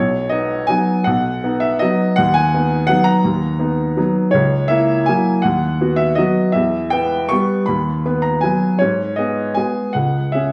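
A clear, woody upright piano sits up front in a wet recital-hall reverb, playing a bittersweet, nostalgic classical waltz alone in B major at 146-172 BPM in a rubato 3/4, its open, long-sustaining tone ranging from B1 to C#6 as the harmony moves from B through F#7/C#, Em and G#m to C#m in this 10.5-second excerpt cut from a longer piece.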